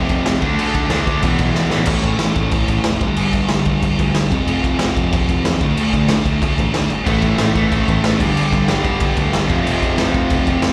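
Punk rock with a raw, angry mood, this is a short cut from a longer piece, and it sounds like a live gig heard through a club PA, with small-room reverb around the band. A dark, sludgy distorted guitar grinds out the riff throughout, while a brighter, up-front overdriven guitar with a slapback echo plays the riff alongside it at the start, drops away as a drum fill ends at 1.9 seconds, and returns at 7.0 seconds. Underneath, a picked electric bass with growly, punchy fuzz sits in the background. The garage drum kit is acoustic and up front, with a boomy kick, a medium-tuned snare and crash cymbal, all gritty and saturated with a rolled-off top and a pumping room sound. The chords move through power-chord shapes from D5 and E5 to A5, G5 and F5 in a blunt, driving progression.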